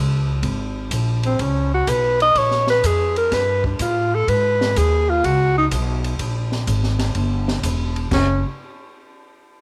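Swinging and relaxed, this small-group swing and bop jazz excerpt moves at 125 BPM in 4/4, with a woody pizzicato upright bass up front from the start, an open acoustic drum kit entering at 0.4 seconds with dark cymbals, a high-tuned snare and a boomy kick, and a breathy, mellow alto saxophone soloing up front from 1.3 seconds with light vibrato, subtone, scooped notes and a smooth top, set in a small room with light reverb.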